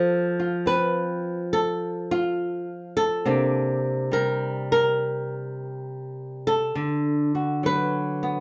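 Solo jazz with a relaxed, playful mood, this short cut from a longer piece features a lone flamenco guitar, fingerpicked with a boxy acoustic tone, playing alone from 0.0 to 8.4 seconds over a loose, swung, rubato feel. The guitar sits up front, moving through F, Csus2 and D6 chords. A wet studio reverb places the listener further back in the room.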